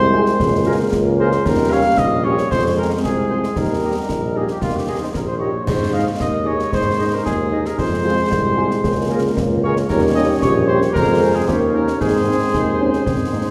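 A mellow, roomy cornet leads up front in this festive, proud military-style march for wind band in Ab major at 114 BPM, carried by a warm tuba bass, dark and punchy trombone chords, a warm woodwind second line and very quiet horns, with close, dry snare, bass drum and dark-toned clash cymbals under a wet scoring-stage reverb, and a mellow euphonium joining at 12.5 seconds as this cut resolves to Ab.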